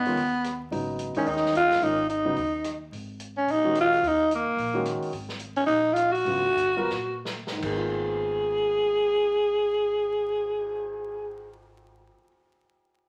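Cool and intense, this brief modal jazz excerpt in G# dorian swings in 4/4 at 153-219 BPM, with a raspy, growling alto saxophone up front carrying the melody over warm grand piano chords, woody pizzicato upright bass and an open jazz drum kit with dark cymbals and a boomy kick, slowing down from 5.1 s into a drum fill before settling on G#m69 at 7.6 s, all set in light reverb with vinyl crackle.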